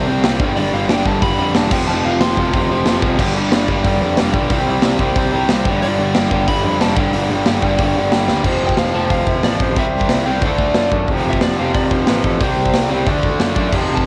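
Rowdy and upbeat, this short cut from a longer punk rock track charges ahead in a straight 4/4 with the dry, close feel of a home recording on cassette. Two bright, overdriven electric guitars hammer out the riff from the first second, one picked and up front, the other a raw garage guitar sitting further back. Underneath, a fuzz-soaked picked electric bass adds a growly, punchy low end, while a big acoustic rock kit with bright cymbals, a medium-tuned snare and a punchy kick sits up front from 0.2 seconds. A warm, slightly broken-up lead guitar carries a compressed melody up high, stepping out briefly after its opening phrase and returning at 5.8 seconds. A drum fill at 8.3 seconds kicks the band into a second section, where the chords move more quickly through F, C and D before the cut ends.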